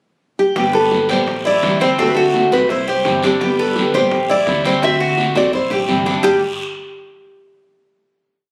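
Latin music in the Cuban son and guajira style, this short, complete piece feels relaxed and danceable. After a brief pickup from the nylon-string guitar, the band settles at 0.6 seconds into a montuno vamp that cycles twice through the same four chords before closing on a final chord at 6.2 seconds. The up-front nylon-string guitar carries a fingerpicked, motif-based melody built on hook phrases, with audible finger squeaks, while a full-bodied dreadnought steel-string guitar supplies strummed accompaniment punctuated by muted slaps. The Cuban tres weaves a metallic, arpeggiated guajeo on its doubled strings, and a woody, thumpy upright bass plays a pizzicato tumbao that anticipates the chords. Round, low-tuned bongos play very quietly in steady eighths alongside a hand bell, a raspy, distant guiro scrapes in long and short strokes, and a drum fill leads into the ending. The whole piece sounds as if captured on a phone in a large studio, with compression and a moderate reverb giving it a roomy studio ambience.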